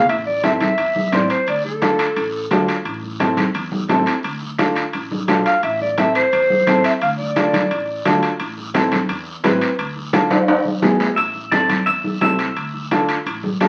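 Fiery and passionate, this cumbia excerpt drives along at 173 BPM in a straight 4/4, rooted in A minor with chords moving mostly between Am and Dm and a brief turn to E. A warm, jazz-style clarinet takes the solo up front, singing with vibrato, scooped notes and a smooth top in two phrases across the opening stretch. Underneath, a woody, growly pizzicato upright bass anchors the low end while a clear, boxy upright piano supplies the accompaniment. Raspy, dry guiro, medium-tuned congas and ringing metal-shell timbales fill out the percussion, and a drum fill carries the music into a new section. At 11.2 seconds a bright, twangy clean electric guitar steps forward with a short picked melody bathed in spring reverb. The recording has a wet studio ambience and the crackle and dulled highs of a very old 78 rpm record.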